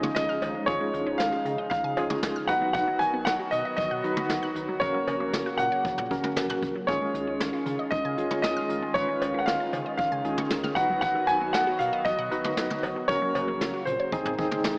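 A clear, polished concert grand piano carries the melody up front in this bright, upbeat synth-pop fragment, cut from a longer piece. Beneath it, a barky tine electric piano plays accompaniment through a combo amp with a fast tremolo, while a shimmering, retro pulse-width pad holds sustained chords with a soft attack and chorus. A juicy, squelchy blip pluck runs arpeggios in the background, its resonant filter colored by a phaser. A jazz brush drum kit with a boomy kick, snare, hi-hat, toms and cowbell keeps a straight feel, and a round, deep analog bass joins at 0.2 seconds, sitting low and dark in the mix. The harmony circles from Dbadd9 through Cb and Gb/Bb before landing on Ab, all bathed in a lush hall reverb and filtered through an AM radio sound.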